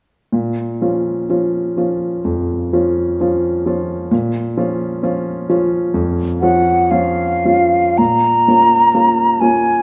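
A clear grand piano opens at 0.3 seconds, setting out a Bb minor chord in its low-to-middle range as accompaniment for this short romantic classical duo, cut from a longer piece. The mood is solemn and yearning, with a slow, rubato pulse in four that gives the phrasing room to breathe. At 6.4 seconds a silver concert flute enters with the melody, its tone mellow, hollow and pure, shaded with vibrato and tongued. Close-miked and set up front, the flute sits slightly above the natural-sounding piano, which is also placed forward. A moderate recital hall reverb surrounds the pair, and the music turns toward a new section shortly before both parts end at 9.8 seconds.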